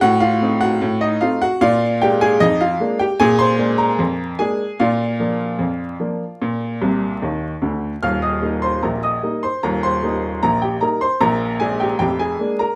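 A straight 2/4 pulse at 75 BPM drives this jaunty, lively ragtime piano piece in Eb major, played by a solo upright piano whose woody, open tone sits up front across a range from Eb1 to F6. The harmony moves from Adim7 through Bb7 to Eb, and a piano fill at 6.8 seconds leads into a new section at 8.0 seconds. A moderate large-studio reverb and a layer of vinyl crackle give this short cut from a longer piece the feel of a live room performance.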